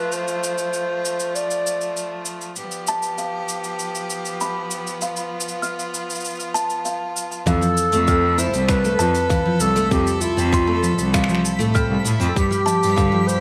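A dark, distant clarinet melody with digital delay opens this pastoral, hopeful folktronica excerpt, set over bright string quartet chords and jazz brushes on cabasa, finger snaps and hi-hat. A woody, ringing kalimba with tape echo enters at 2.9 seconds, and at 7.5 seconds the clarinet returns alongside full-bodied picked steel-string acoustic guitar arpeggios, an up-front bowed cello bass line with vibrato and a tight electronic kick, soon joined by a twinkling granular texture in the background. Light reverb and small room ambience surround the parts.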